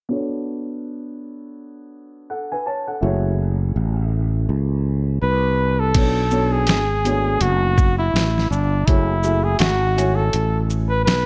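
A breathy, jazz-style flugelhorn takes the solo melody from 5.2 seconds, with vibrato, scooped notes and a slapback echo, in this cool, mellow jazz-hop excerpt. It opens on a dark, boxy grand piano under a low-pass filter sweep, joined at 3.0 seconds by a growly, bright fretless electric bass sitting up front, as the chords move between Bm7 and F#m7. A gritty, compressed boom bap kit, pitched down with vintage 12-bit sampler crunch, a thumpy kick, a medium-tuned snare, hi-hat, shaker and crash, arrives at 5.9 seconds with a swung 16th-note feel, all in a dry, close-sounding space.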